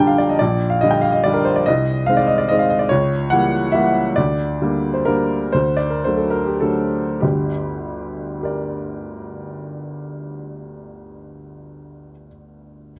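A clear, woody upright piano plays alone in this elegant, wistful classical waltz excerpt in G minor, moving in a rubato 3/4 between 94 and 151 BPM and slowing from 3.5 to 7.2 seconds as the harmony passes from Gm/Bb through C#dim7 to D before settling on Gm, its smooth, vintage tone and long sustain placed up front by close, detailed microphones with light reverb.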